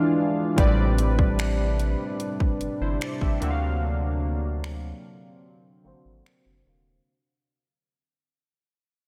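Overdriven trap drums, with a hard-clipped kick, bright hi-hats and finger snaps, sit up front in this sensual, moody contemporary R&B fragment at 74 BPM, entering with a deep, round sine sub bass at 0.6 seconds. Detuned, airy vintage analog keys with chorus and a warbling sawtooth tone share the harmony with a shimmering, retro pulse-width pad, moving from E7b9 through Am11 to D7alt. A filter sweep and fade-out run through a dreamy mix soaked in lush hall reverb, with a break from 3.8 seconds.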